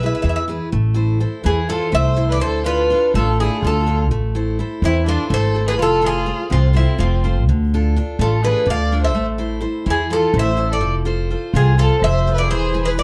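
A dark production with light reverb frames this tense, intense Greek folk passage in 7/8, cut from a longer piece and circling through A minor, D minor and F before settling on E. Up front, a metallic, double-strung bouzouki carries the melody, while a rich, nasal bowed violin with vibrato supplies a second line. A bright picked steel-string acoustic guitar fills in the accompaniment, and a woody, growly pizzicato upright bass thumps prominently beneath them all.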